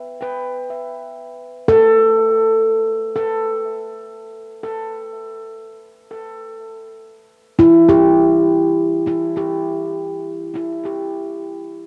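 Heard through a wet spring reverb on a home cassette recording, this peaceful, serene ambient fragment from a longer piece features a solo handpan, close-miked, up front and coloured by cassette tape and tape echo, whose ringing, mellow stainless-steel tones, struck with soft fingertips between E4 and B4 over a rootless C chord, fall silent at 10.9 seconds.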